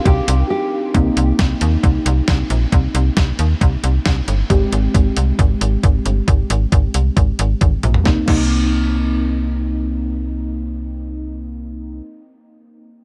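Melancholic yet driving, this synth-pop excerpt in C minor at 135 BPM opens with a brief, dark nylon-string guitar note carrying tape echo over muted, felt-like synth keys with chorus, before a snappy, metallic slap-like FM bass and a thumpy, clean 12-bit drum machine up front push through a light digital ambience, with a drum fill at 7.6 seconds before the drums stop at 8.4 seconds.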